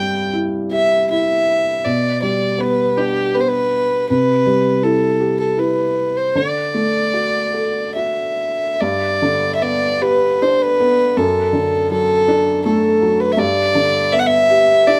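A dark, woody fiddle, played by a single player, bowed close and up front with light vibrato and portamento, carries the melody of this tender, nostalgic Celtic slow air in 3/4 at a rubato 69-83 BPM, while a soft, mellow, felt-muted upright piano lends intimate accompaniment from the start, with the two playing live together in a small room whose moderate reverb gently rounds this excerpt as the harmony turns toward a new section at 8.8 seconds.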